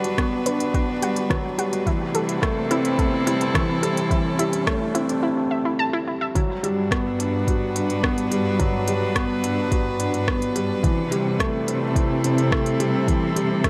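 Light reverb and digital ambience frame this tender, hopeful piano-and-strings electronica excerpt at 107 BPM in G major, where an up-front felt-muted upright piano with audible action noise plays a delayed riff over dark sul tasto string quartet chords. A lush background cello section carries the sidechain-pumped bass, and a warbling lo-fi sawtooth pluck adds chorused arpeggios under a filter sweep until 6.3 s as a very quiet riser builds. A soft overdriven electronic kick, smooth hi-hats and rim clicks drive the music beneath the Gmaj7 and C6 changes through the drop at 6.4 s.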